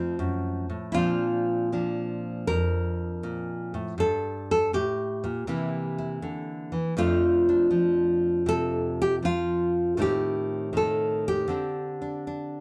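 Swinging eighths at a loose, rubato 80 BPM in 4/4 carry this solo jazz excerpt in F major, where an up-front, full-bodied nylon-string guitar is fingerpicked with a deep classical tone, moving through F, Bbadd9, Gmadd9, C7, F6, Am7b5 and D7sus4 across its 12.6 seconds, with moderate studio reverb giving the mood a warm glow.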